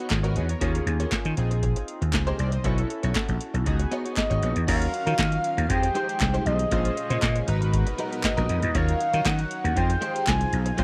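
A growly, punchy slap bass sits up front in this late-night, danceable early-eighties boogie funk groove at 118 BPM in Eb minor, driven by a booming analog drum machine with a deep kick, tonal snare and metallic hats, alongside a glossy chorused polysynth, a bright, clean direct-recorded guitar riff, crisp group handclaps in the background, and, from 4.2 seconds, a smooth, warbling portamento lead with slapback echo, joined at 4.7 seconds by very quiet shimmering string-machine violins as the sus4 chords give way to minor ninths in this dry excerpt.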